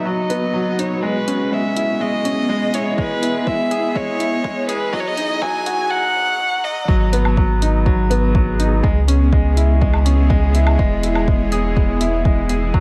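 Moving and melancholic, this short cut of piano and strings electronica pairs a dark, woody bowed violin melody, filter-swept through a build-up until it stops at 6.9 s, with a clear, worn grand piano riff, a blurred, granular cloud pad and a deep, round sub bass pumping under the sidechain, while dark electronic hi-hat and woodblock enter at 0.3 s and a punchy electronic kick joins at 3.0 s ahead of the drop, all set in a lush hall reverb.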